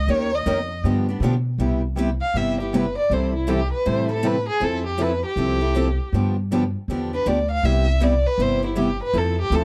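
A dusky, bowed violin with expressive vibrato and portamento opens alongside a woody, thumpy pizzicato upright bass on gut strings, both up front, in a lively, charming stretch of acoustic jazz manouche swing in C major at 159 BPM. Two picked guitars join at 0.1 s: a bright archtop and a boxy steel-string parlour guitar comping through chords like Eb7, G7 and Cmaj7. At 1.6 s the violin takes a solo over a Cmaj7, Am7/C, Fmaj9 and G6 progression, all set in a small, moderately reverberant room with a dark, warm production.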